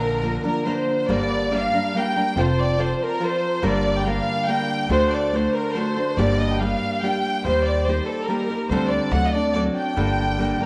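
A passionate, dramatic mariachi excerpt in 3/4 at 142 BPM and in G minor, this short cut from a longer piece sets a clear, lush violin section with intense vibrato on the melody over a full-bodied, fingerpicked nylon-string guitar with audible finger squeak and a dark, woody pizzicato upright bass, all bathed in a wet echo chamber reverb, with harmony moving through Gm, F, D and Eb to a D7sus4 and D7 before settling on Gmadd9 at 10.0 seconds.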